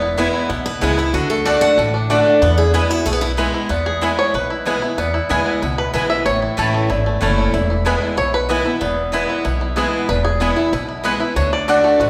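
Heard through the lush reverberation of a church or concert hall, this rustic, joyful bluegrass snippet features an up-front, twangy banjo played with fingerpicks carrying the melody and taking a solo from 3.7 seconds, while a bright, full-bodied dreadnought guitar picks the accompaniment with audible finger squeak, a boxy parlour guitar with fresh strings briefly plays a melody between 0.7 and 3.3 seconds, a double-strung mandolin adds stabs, and a thumpy, woody upright bass with gut strings is plucked underneath.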